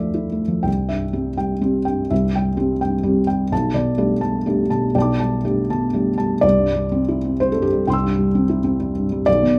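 A felt-muted upright piano opens this excerpt alone on a Dmadd9 chord, its tone soft, dark and mellow, with thick felt dulling each note and the action noise clearly audible. The piece is reflective, intimate neoclassical minimalist piano in 3/4 at 126 BPM, played with a rubato feel and tuned to A4 = 441 Hz. The harmony shifts to C at 0.7 seconds, passes through Gadd9/B, and settles back on C as a new section begins at 6.4 seconds. The piano spans from B1 up to E6, and its sustain is short. A moderate studio reverb surrounds the up-front instrument until the fragment, cut from a longer piece, stops at 9.6 seconds.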